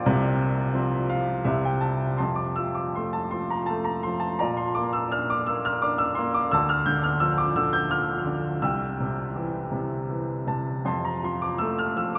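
A woody, up-front upright piano rings through a vast cathedral reverb, its notes trailing long echoes in the huge space. This relaxed, sunny passage of lyrical solo classical piano, cut from a longer piece, sits in F major and 3/4 with a rubato feel around 78-90 BPM. A short piano fill runs from 0.7 to 2.2 seconds before a new section settles into an F, Bb, Dm, C and back to F progression, spanning the keyboard from deep bass to brilliant high treble.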